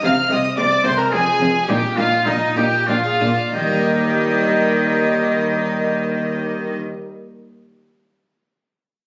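A clear, distant oboe with light vibrato carries the melody alongside a close violin section in this festive, brilliant excerpt from a baroque-style concerto movement in 3/4, with a rich second violin line and viola section in the background, a close cello section and double bass section anchoring the bass in gut-string period tone, and a dry, round, plucked harpsichord sitting in the background beneath a moderate recital-hall reverb, all captured on a phone in the room as the music slows down over the first 3.5 seconds.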